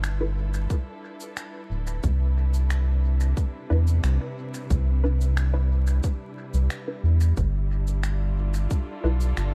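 Ambient dub at 90 BPM, hazy and peaceful, built on a round, deep analog bass and a tight electronic kick entering at 0.7 seconds, with electronic finger snaps and cabasa trailing dub echo, a filtered, detuned chord stab drenched in phaser, chorus and echo, and a lush, woody string section fading in on sustained chords as the harmony moves from G13 to Cmaj9 and back, all set in an echo-heavy digital ambience flecked with vinyl crackle in this excerpt from a longer piece.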